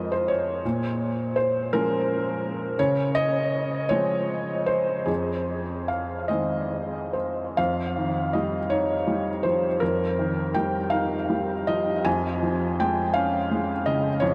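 Neoclassical minimalist piano in a slow, rubato 6/8 at 44-57 BPM, this intimate and wistful passage, cut from a longer piece, features a solo felt-muted upright piano that sounds soft, mellow and vintage, sitting up front with tape echo. The harmony drifts through Fm7, Bbm7 and Dbmaj7 before a second section at 7.6 seconds settles over an F bass with Eb/F and Db/F. A huge ambient reverb with a long 8.8-second tail soaks the dreamy mix.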